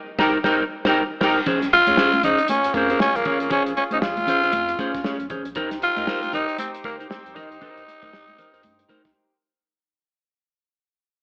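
A band accent from horns, clean electric guitar, round analog bass and a dark soul drum kit opens this driving, cool funk excerpt at 117 BPM with a swung sixteenth feel, before congas enter at 1.5 seconds and a raspy, growling tenor saxophone takes the lead up front over the slapback-echoed horn section, moving from Cm7 to Bbm9 as the music fades out, ending in a break at 9.2 seconds, all wrapped in a light room reverb and a lo-fi AM radio tone.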